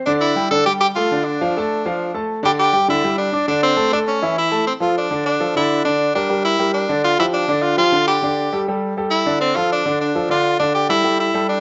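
The recording sits in a large studio room with a moderate one-second reverb tail, and its top end is rolled off above 7.7 kHz, giving the sound a softened ceiling. This short cut from a longer latin piece in D minor moves at a brisk 202 BPM in a straight 4/4, passionate and danceable throughout. An edgy, punchy tenor saxophone carries the melody up front as a soloist, singing between C4 and A4 in a pop style with a light vibrato. Beneath it, a clear, polished concert grand piano supplies the accompaniment across a broad range from D3 to D6, with deep bass and long sustain. The harmony opens on a rootless Cadd9 moving through Dm, Gsus2 and Asus4 to A, then from 4.7 s a second section cycles through Dm, Em7b5, G5 and A7sus4 before settling on Dm and returning to A7sus4 at 10.6 s.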